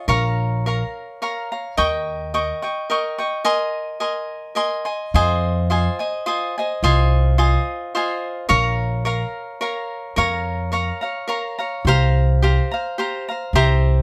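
A bright, crisply picked cavaquinho sits up front through this festive, romantic mariachi fragment, cut from a longer piece, picking out chords in a straight 3/4 at 107 BPM. A woody, thumpy pizzicato upright bass on gut strings plays beneath it, drops out after 2.5 seconds, and returns at 5.1 seconds as the music shifts from A-flat major into F minor. The chords move through Fm7 and Bbm to a closing C7sus4, all in a lightly reverberant acoustic sound.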